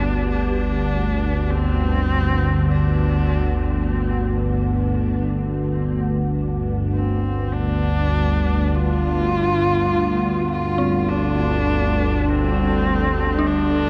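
A husky, clear horsehead fiddle sings a bowed melody with vibrato and portamento through a diffuse delay over a warbling, organ-like drone that sits up front and a very quiet, eerie, inharmonic synth bell tracing arpeggios in this ominous, vast dark ambient piece in free time on a Gsus2 chord, with a deep, moody pad entering in the background at 8.4 seconds before the excerpt, cut from a longer piece, fades out from 12.7 seconds in a huge, echoing space.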